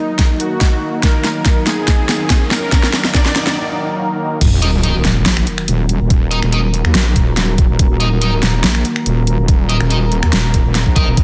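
This heavy, aggressive wobble dubstep excerpt opens on a build-up. A smooth, softly attacked supersaw melody with digital delay moves under a filter sweep, alongside a lush, airy unison pad with chorus and phaser, while a deep, moody ambient pad sits in the background with chorus and reverb, and both pads pump against the sidechain. The overdriven kick and drum kit come in almost at once with a fill, and an electronic riser and sub drop sit in the background. The supersaw stops at 3.6 seconds for a short break. At 4.4 seconds the drop lands with an impact: a saturated, resonant wobble bass takes the low end up front in a half-time feel, joined by scooped, distorted guitar stabs with digital delay. The knocking kick and huge snare stay prominent in a dense, heavily limited mix with light digital ambience.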